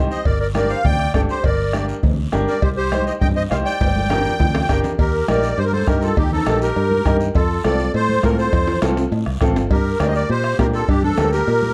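A dark, lightly reverberant mix carries this fiery, driving cumbia, cut from a longer piece, with a reedy, shimmering musette accordion leading the melody up front over a punchy, foam-muted fingered electric bass and the soft-beater thump of the bombo. A breathy clarinet with vibrato and scooped notes plays a jazz-style second line, while a clear, woody upright piano supplies accompaniment and the raspy guiro, distant ringing congas and dry metal-shell cowbell and timbales sit in the background. Drum fills arrive at 3.8 and 8.5 seconds, the first leading into a new section at 5.0 seconds.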